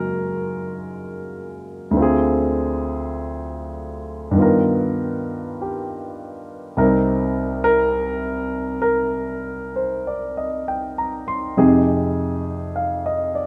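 In a dark, moderately reverberant large-studio sound, this romantic, intimate jazz ballad excerpt features a warm grand piano played solo and up front, with a swing feel, moving through rich extended harmonies from Gbmaj9#11 through Dm7b5, G7alt and Cm7 before settling on Fm9 at 11.6 seconds.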